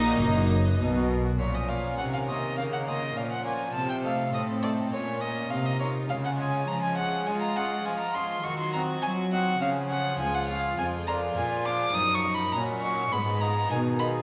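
A wet recital-hall reverb surrounds this stormy, dramatic baroque-style concerto movement in a church or concert-hall acoustic, cut from a longer piece in a steady 4/4. Up front, a single period-style violin carries the melody with an airy bow and a nasal, reedy gut-string tone, while a very quiet violin section also plays the melody behind it and a second violin section supplies a lower line. A close-miked, dry harpsichord, full-bodied with two sets of strings in the French style, plucks out the accompaniment alongside a warm viola section in the background. The cello section anchors the bass throughout, joined by a rich double bass section that plays only until 1.4 s. The harmony moves restlessly through diminished and half-diminished chords, shifting its tonal centre at 10.8 s and giving the solo episode a tense, searching character.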